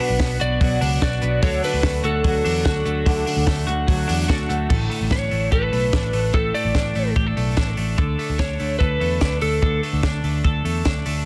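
A twangy, compressed twelve-string electric guitar rings through this short cut of youthful, bright jangly indie pop, its clean picked arpeggios running across the whole clip. Above it, a lightly driven lead guitar with a slightly broken-up edge carries the melody through digital delay until 9.8 seconds. A compact cocktail drum kit sits dry and up front, its punchy kick and high-tuned snare set against dark cymbals, while a round, foam-muted vintage electric bass anchors the low end in a straight 4/4 feel. Early on, a picked steel-string acoustic guitar adds warmth in the background, and a very quiet chorused retro synth with glossy pulse and sawtooth tones and a filter sweep shimmers alongside; the synth drops out at 4.7 seconds and the acoustic shortly after, as the harmony moves from Bm and D to Asus4 and D5. Light studio reverb and a dense, heavily limited modern master give the mix a loud, polished sheen.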